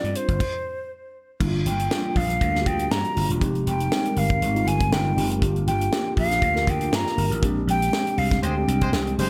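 Bittersweet and slick, this short cut from a longer piece of polished 1980s jazz-funk pop moves at 120 BPM with a swung sixteenth feel, as a breathy, hollow, close-miked concert flute carries the melody over mellow chorused tine electric piano, growly punchy slap bass and a tight funk drum kit with a high-tuned snare, all pausing on a stop from 0.4 to 1.4 seconds, then moving through Gm7 and Fm9 changes before a band accent at 7.4 seconds, where a vintage horn section with light vibrato slips in at 8.4 seconds over the closing Bb13.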